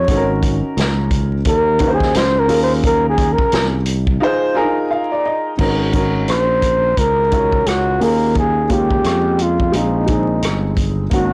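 A breathy, lightly vibrato-tinged flugelhorn carries a smooth, relaxed jazz-hop melody in Ab mixolydian at 87 BPM with a swung 16th feel, bathed in plate reverb over a growly fretless electric bass, a dark, woody upright piano whose action noise is audible and who takes a fill at 4.2 seconds while the punchy vintage drum kit drops out, all through a blown-out, overdriven recording dusted with vinyl crackle, cut from a longer piece.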